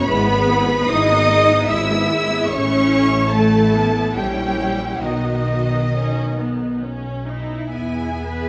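A tender, serene slow romantic movement for string orchestra in E major opens with violins singing an intense, distant melody over a second violin line of rich, focused tone, while violas and cellos fill the accompaniment and bass with clear, vibrato-laden bowing, the double basses joining at 0.1 s with a smooth, even and up-front foundation. Moving in a rubato 3/4 at around 67-75 BPM, the harmony passes through E/G#, A, A#dim7 and B before settling on E at 7.7 s in this fragment cut from a longer piece. A dark, warm production places the lush ensemble in a wet scoring stage reverb.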